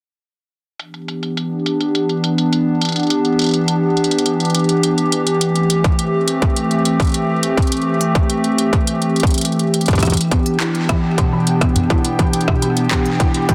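Melancholic and glitchy, this IDM excerpt moves at 104 BPM in 4/4 with a straight feel in E minor, cut from a longer piece. An industrial drum kit of handclaps, smooth low-passed hi-hat, rim click and toms comes with a touch of delay, while a hollow, flute-like pad carries sustained Em7 and Am7 chords up front with a slow attack and a chorused, airy sheen. At 5.8 s a distorted electronic kick joins, forward in the mix, and a drum fill at 9.7 s leads into the next section. From 10.0 s a woody, band-limited kalimba plays short plucked arpeggios through a filter sweep and delay, soon joined by a faint, bubbling sawtooth texture whose resonant random filter steps shimmer bright in the background. The whole sits in light digital ambience under a dense, heavily limited modern master.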